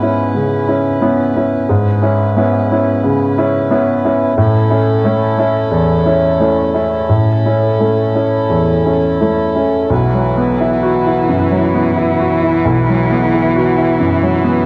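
A clear, up-front grand piano carries the accompaniment in this tender, intimate neoclassical piece, played with a rubato feel and cut from a longer work. Alongside it, a reedy, breathing pedal harmonium holds sustained chords from the start, and at 9.9 s a single bowed cello enters up front with a rich, smooth second line marked by vibrato. The home cassette recording gives every part a tape character, all set in a lush hall reverb.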